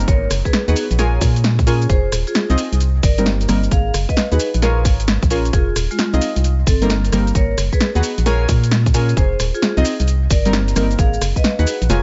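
This is a moody, skippy two-step UK garage cut in F minor at 132 BPM, its 16ths swung so the groove lurches forward, taken from a longer piece. A hollow, organ-like FM bass sits up front, dark and percussive with a fast attack and quick decay, while a tight, layered electronic kick and a punchy analog drum machine supply snare, rim click, hi-hat and shaker. Deep, full-bodied chord stabs enter at 0.7 seconds, soft and detuned with a filter sweep, chorus and tape echo, cycling through Abm7, Bbm7, Fm7 and Cm7. Over them a close-miked vibraphone played with medium hard mallets and its motor off rings out a metallic melody, given tape echo of its own. A very quiet downlifter and swell open the track and return briefly at 11.9 seconds. The mix is dry and echo-heavy, with its top end rolled off to a dusky, muffled sheen.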